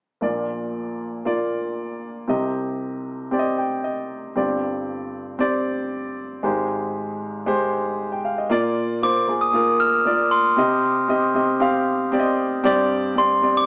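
A polished, up-front baby grand piano opens this driving, dramatic pop excerpt at 116 BPM in a straight 4/4, cycling through Bb, Cm, Gsus4 and Abmaj7 with a fill at 3.3 seconds, before a bell-like, ringing glockenspiel with soft plastic mallets enters at 9.0 seconds with a high melody in a boxy small room, all heard through a moderate studio reverb and the worn, warbling pitch drift of old cassette tape on a small speaker.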